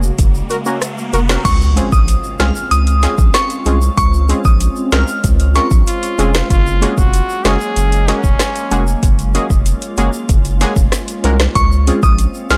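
A thick, saturated sub bass sits up front of this bouncy, summery dancehall cut from a longer piece, driven by a produced electronic drum kit with a deep kick, woody snare and metallic hats, while a warm egg shaker and timbales sit close and dry in the background. Nasal, detuned synth brass stabs with chorus and sidechain pumping ride over an ethereal FM pad drenched in ensemble chorus, reverb and phaser, as a background riser builds to an impact at 1.4 seconds, where a crystalline, warbling bell melody with tremolo and tape echo enters. At 5.9 seconds a brilliant, forceful trombone takes a scooped, smooth-topped second line with tape echo, and the bell returns at 11.6 seconds over chords moving between Gbadd9 and Dbmaj7.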